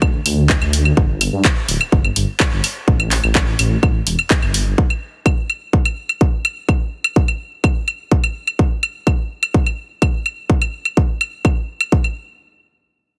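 A straight 4/4 pulse at 126 BPM drives this dark, hypnotic melodic techno excerpt, with a punchy electronic kick running from the start to 12.0 seconds beside a tape-warm house kit of claves, handclaps and hi-hat, both placed up front with a small-room character. Underneath, a deep, rumbling detuned saw bass with beating unison voices spans D1 to G2 and pumps against the sidechain, sounding only until 4.7 seconds. The mix is dry and heavily compressed, giving it a squashed, radio-like sound.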